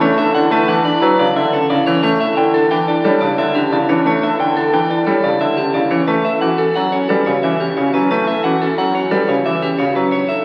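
Meditative yet urgent, this short excerpt of minimalist classical pattern music in a straight 6/4 sets a twangy, slightly broken-up electric guitar melody up front over a bright, intimate grand piano with audible action noise, ringing soft-mallet vibraphone arpeggios with fast motor vibrato, a mellow clarinet second line and a smooth bowed cello holding a low E in the background, all bathed in a wet scoring-stage reverb and the crackle of a very old 78 rpm record as the harmony moves from Bm9/E through A7sus4/E to Esus2 at 6.1 seconds.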